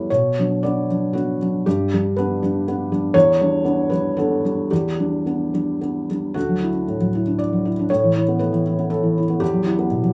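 Neoclassical minimalist piano in 3/4, wistful and intimate, moving with a rubato feel between 107 and 124 BPM and cut from a longer piece. A felt-muted upright piano plays solo and up front, its soft, mellow tone shaped by thick felt and carrying audible action noise as it spans D2 to D5 through Bm, G and Em7 before turning at 6.3 seconds to Dadd9, Aadd9 and Emadd9. The sound is a rough home demo in a small room with moderate reverb.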